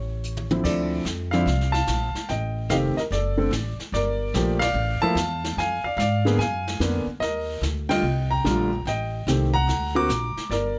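A dry, close-sounding fragment of a relaxed jazz piano trio swings along as an intimate upright piano carries the polished, long-sustaining melody with audible action noise, a thumpy gut-string upright bass is plucked up front, and a brushed drum kit with dark cymbals and a boomy kick enters with a short fill at 0.2 seconds before the band hits accents together at 4.5 and 7.8 seconds over richly extended minor-key chords.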